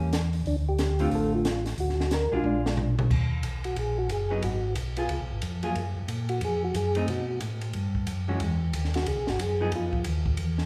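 A brisk swung 4/4 groove drives this smoky, soulful soul-jazz organ trio fragment, with a compact cocktail drum kit giving a dry, punchy kick, a high-tuned snare and dark cymbals, and a fill from 2.4 to 3.1 seconds. Underneath, a round, mellow tonewheel organ carries the bass line up front with chorus vibrato and a slow rotary speaker, while a clean, picked hollow-body electric guitar comps with a dark tone. From 3.1 seconds a soft, flute-like percussive tonewheel organ takes the solo over rich extended chords, its second-harmonic percussion and slow rotary swirl blooming in the lush reverb of a recital hall.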